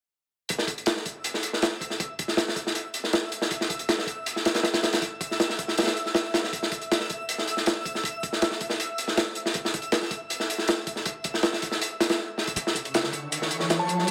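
Drum and bass with a jungle edge at 159 BPM, raw and nostalgic, built on a crunchy, saturated breakbeat kit up front, its tight kick, medium-tuned snare and hi-hat sounding gritty with a rolled-off top, while a twinkling granular texture with octave-up shimmer sustains in the background from 1.2 seconds. At 12.6 seconds a build-up begins as a dusty, tape-warm sampler-style kit of hi-hat, shaker and snare joins far behind, an electronic riser enters at 12.9 seconds, and a brief glassy FM bell warbles on a single high note through chorus and tremolo. The mix sits in a small room with light reverb, and the excerpt is cut from a longer piece.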